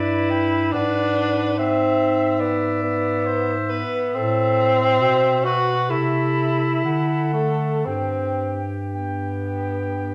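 A mellow tenor saxophone with vibrato sits up front, carrying the accompaniment of this tender classical piece for single-reed quartet, heard as a 10.1-second cut from a longer work in G major, flowing in a rubato 4/4 at around 55-74 BPM. Above it, a soft-attacked clarinet sings the melody and an alto saxophone with light vibrato shapes a second line, the two clear voices set back in the room. Beneath them, a dark, present bass clarinet anchors the harmony as it moves from G through E7/G# and A minor to D and home to G, all within a recital-hall reverb.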